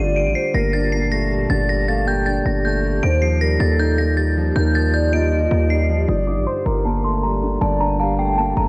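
Eerie and dark, this half-time hip hop excerpt sets a ringing, inharmonic FM bell melody high above a hollow, woody clarinet-like synth lead. A boxy, deep concert grand piano carries the accompaniment over a distorted, aggressive 808-style bass that sits up front, while an ethereal, detuned pad holds sustained chords in the background through the Gmadd9 and Ebadd9 harmony. Everything plays through worn, warbling cassette tape with light reverb, and a filter sweep marks the final section from 6.1 to 8.7 seconds.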